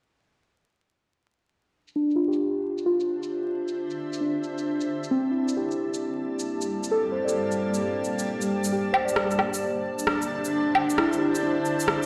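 Future garage at 133 BPM with a swung, rainy and wistful feel in D minor, where muted, felt-like synth keys with chorus, 12-bit sampler grit and dub echo arrive at 2.0 seconds under a filter sweep, alongside a layered electronic kit of shaker, woodblock and rim click, before a blurred, detuned granular cloud pad fades in over Dm9, Gmadd9 and Dsus2, all bathed in lush hall reverb and vinyl crackle as if played through a big sound system in a bare room.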